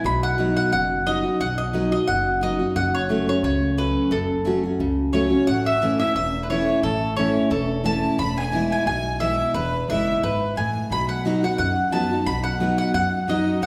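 Bright, picked mandolin leads this driving, lively bluegrass excerpt at 177 BPM, sitting up front over a full-bodied dreadnought acoustic guitar and a woody, thumpy pizzicato upright bass, moving through B, F#m, A and E chords. At 5.1 seconds a clear, boxy fiddle joins as a second line, played by one bowed player with light vibrato and an airy, intense tone. The whole group rings in the wet reverb of a recital hall or church.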